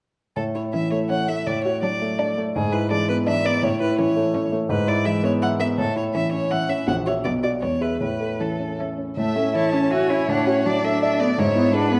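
Bathed in the reverb of a recital hall, this cheerful, graceful excerpt from a quick classical-period piano quartet movement in A major moves at 165 BPM in 3/4 with a rubato feel: a polished, up-front grand piano accompanies a rich, focused solo violin carrying the bowed melody with vibrato from 0.4 seconds, while a dark, expressive cello with portamento and a smooth-topped second violin join on supporting lines at 0.7 seconds.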